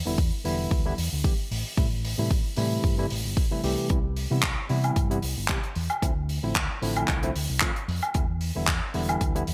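A lightly swung 4/4 groove from a punchy, layered electronic kick and a dry, up-front funk kit of handclaps, hi-hat and woodblock drives this sunny, feel-good nu-disco fragment, where a dark, round fingered electric bass anchors clean tine electric piano chords that pump under sidechain, dulled by a low-pass filter and trailed by digital delay, all in a bright 1980s-style digital production with light studio reverb.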